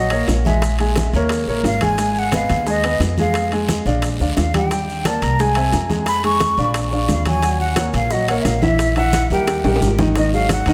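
A thumpy, woody upright bass sits up front with gut-string pizzicato, anchoring this driving, fiery Afro-Cuban jazz passage in a straight four. Above it, a breathy, mellow silver concert flute carries the melody with vibrato and a crisp attack, its slightly unsteady tone trailed by a diffuse ambient delay. A warm baby grand piano, also up front, supplies the accompaniment through a chord-rich progression full of minor sevenths and altered dominants. From about 0.1 s a percussion section joins: very quiet bongos, tight and hard-handed; bright, low-tuned congas; ringing metal-shell timbales in the background; and grainy, distant maracas further back, with a raspy guiro entering at 0.3 s. A drum fill arrives at 9.5 s. The whole passage, cut from a longer piece, is soaked in a moderate plate reverb that lends it a dreamy haze.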